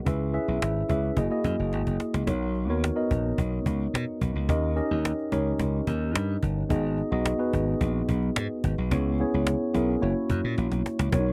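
A dry, close studio sound frames this breezy, urban slice of polished 1980s jazz-funk pop in a straight 4/4. A mellow tine electric piano with subtle chorus carries the chords, moving from C#m7 and F#13 into Bmaj9, while a bright, punchy slap bass and a woody cajon with faint snares and hard hands sit up front. The cajon plays short fills at 1.7 and 10.6 seconds as the harmony passes through D#7, G#m7 and C#m7 before arriving on F#7.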